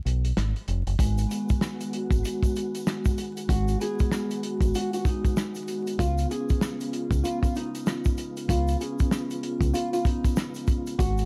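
Boom-bap hip-hop in G# dorian at 96 BPM with a swung 16th-note feel, dark and reflective, this excerpt opens on a one-second break of round, dark fingered electric bass and a dry, muffled soul drum kit with tight kick, snare, rim click and hi-hat, both sitting up front. At 1.0 seconds a ringing, vintage vibraphone played with soft mallets and a slow motor vibrato joins over G#m7, alongside a flute-like tonewheel organ with lush chorus and key click and a grainy, distant egg shaker, both in the background. At 3.5 seconds a small, thumb-plucked nylon-string guitar carries the melody through tape echo, the chords moving to C#7 at 6.0 seconds, all in a dry mix under vinyl crackle.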